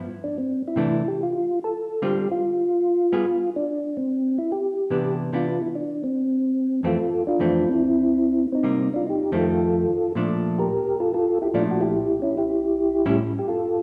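A large, reverberant studio holds a band playing live together in this bluesy, greasy swing jazz cut from a longer piece, moving at 145 BPM in C major before shifting to F major at 7.0 seconds. A mellow, flute-like tonewheel organ with percussive second-harmonic attack, chorus vibrato and a slow rotary speaker carries the melody up front from 0.2 seconds, and a dark, clean hollow-body electric guitar joins at 0.8 seconds with fingered accompaniment. The harmony runs through rich jazz changes such as C69, Dm7, G7b9 and Cmaj9, then Cm7, F7, Bbmaj7 and A7.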